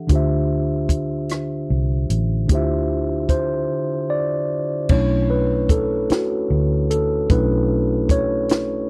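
A slow, straight six-eight pulse at 50 BPM in B minor sets up this yearning, late-night R&B excerpt, carried by a compact cocktail drum kit with a tight kick, high-tuned snare, rim clicks, hi-hat and dark crash cymbals, under a round, punchy foam-muted electric bass that sits low and dark. A mellow tine electric piano plays the accompaniment up front over a Dm11 chord, and after a break at 3.7 seconds it takes a solo from 4.9 seconds as the harmony moves to Bm11. The sound is dry and close, like a 1970s studio session, with the drums natural and present and the piano clean and direct.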